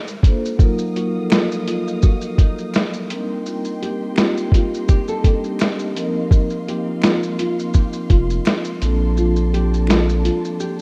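A rough home-demo mix with light reverb and a small-room feel frames this nostalgic, cosy lo-fi hip hop piece, cut from a longer work and moving at 84 BPM in 4/4 with a gentle 16th-note swing through Bbmaj9, Ebmadd9, Cm7 and F7sus4. Up front, a muffled, compressed sampler-style drum kit with a thumpy kick sits beside a mellow soft-mallet vibraphone coloured by cassette tape and slow motor vibrato. Meanwhile, a dark, fingerpicked nylon-string guitar carries the melody through a low-pass filter with the odd finger squeak, and a veiled, con sordino string section holds faint sustained chords beneath. Very quiet finger snaps from 1.3 s add a human touch, a round, deep dub sub bass enters at 8.1 s, and the kick drops out at 9.2 s.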